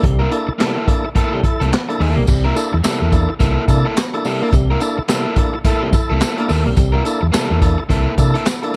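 A dark studio production frames this playful, energetic funk excerpt at 107 BPM, swung on the 16ths in C mixolydian, where a gritty, up-front breakbeat kit with a punchy kick, high-tuned snare, handclaps, hi-hat and crash cymbal drives alongside a round, overdriven fingered electric bass, a crunchy picked guitar accompaniment soaked in spring reverb, and key-clicking tonewheel organ stabs spun through a fast rotary speaker over a C13 chord, while a jingly, distant tambourine joins at 2.3 s.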